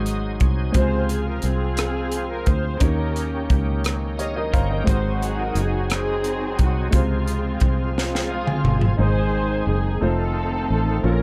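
In a slow, straight 6/8 at 58 BPM counted in dotted quarters, this excerpt of uplifting, hopeful gospel in Db major moves through Ab7, Dbmaj7 and Eb7 before settling on Ab and then F7 near the close. A crisp, saturated fusion kit sits up front with a punchy kick and a high-tuned snare, adding hi-hat, rim click and toms, and playing a fill from 8.0 to 9.0 s before it stops at 9.0 s. A round, foam-muted fingered electric bass anchors the low end, also close and present. The melody belongs to a muted string section, bowed con sordino with vibrato, veiled and distant yet lush. Alongside it, a bright, shouting tonewheel organ holds sustained chords through a slow rotary speaker with light overdrive, chorus vibrato and key click, while a woody, vintage upright piano with short sustain accompanies from the background, both of them adding fills around 3.8 s and 8.0 s. The production is dark and dry, with little reverb.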